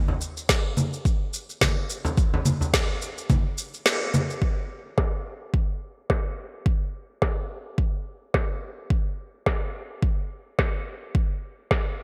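Swung 16ths at 107 BPM in 4/4 drive this mystical downtempo fragment, where a deep, softly hand-played acoustic frame drum opens up front before falling away at 2.7 s. An overdriven electronic kit of shaker, woody low-pass-filtered snare and congas, re-recorded in a small room, runs alongside a deep overdriven electronic kick, which drops out at 3.9 s on a band accent and returns at 4.4 s for the second section, all bathed in a moderate plate reverb and a bright 1980s-style digital sheen.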